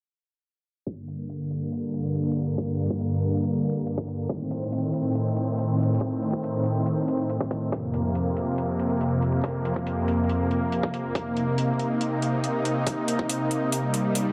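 A lush, detuned supersaw pad leads this chaotic, aggressive heavy wobble dubstep fragment, holding soft-attack chords from Gm through Adim, Fsus4 and Cm7, pumping against the sidechain under a sweeping low-pass filter. Alongside it, a punchy, overdriven electronic kick and metallic, overdriven hi-hats drive a half-time feel in a small room, with their own filter sweeps. A moderate plate reverb surrounds the mix, and an electronic swell enters at 13.9 seconds as this cut from a longer piece closes.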